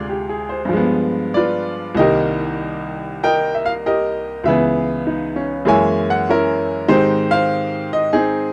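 A dry, close recording with a 1970s studio character and a touch of light reverb places a single upright piano up front. This is a short slice of solo jazz, cut from a longer piece, lasting 8.5 seconds and carrying a smoky, swinging mood. The tempo sits around 97 BPM in 4/4, with a swung eighth-note feel loosened by rubato. The piano's tone is brilliant and woody with a vintage edge, covering a range from C2 up to Ab5. Its harmony moves through Dm7b5, G7b9 and Cm7, then shifts to Dbm7 and Gb9 before coming to rest on Abmaj7 at 6.9 seconds.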